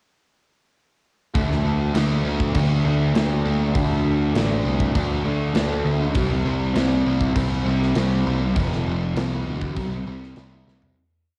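A double-tracked fuzz guitar stands out front in this hazy, dreamy piece of shoegaze and dream pop rock, strumming distorted chords on D5, C5 and F5 with whammy-bar dips, coloured by subtle chorus and cassette-tape grain. Entering at 1.4 seconds, an overdriven picked electric bass drives eighth notes up front while a big acoustic rock kit plays a straight groove with a punchy kick and bright cymbals. The whole home recording sits in light reverb and fades out from 8.6 seconds, ending on a drum fill at 10.7 seconds.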